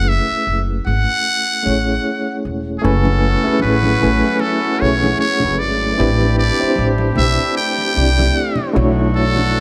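A buzzy trumpet with a metal mute carries the melody from the start, adding light vibrato, scooped notes and a growling edge, over a reedy electric piano with fast tremolo and a woody, thumpy pizzicato upright bass up front. Punchy horn-section stabs arrive at 2.8 seconds, bright, damped congas at 3.1 seconds and a silky, chorused string machine at 3.8 seconds, all three sitting in the background beneath light reverb. The swung sixteenths and minor eleventh chords give this soulful, late-night neo-soul R&B fragment its character.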